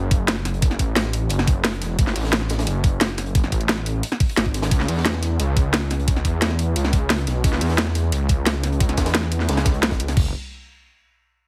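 A thick, detuned sawtooth bass with a chorused, overdriven unison tone sits up front from the start, anchoring this tense, dark technical drum and bass excerpt at 176 BPM, cut from a longer piece and opening straight into the drop. Layered electronic kits drive it with a knocking kick, crashes and toms alongside a cracking snare and bright, overdriven hats, while a gritty, saturated acoustic breakbeat kit with a high-tuned snare and rolled-off top sits in the background. Everything carries a small-room ambience and a heavily compressed, radio-like sound, with the drums stopping at 10.2 seconds and the bass running to 10.3 seconds.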